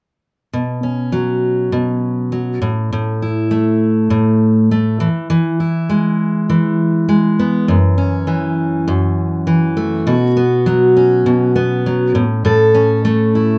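Carefree and heartfelt, this short pop excerpt features a lone picked steel-string acoustic guitar with a light swing to its sixteenth-note feel. The guitar sits up front with a full-bodied jumbo tone, and audible finger squeak gives the playing an intimate, human touch. It runs from 0.5 to 13.6 seconds across a span from F#2 to A4, moving through Bsus2, A5, E and F#m7 before a second section begins at 10.1 seconds and returns to Bsus2 and A. A moderate studio reverb adds a little space around the instrument. The rough home-demo mix has a dull, softened top end, giving the recording a casual, unpolished charm.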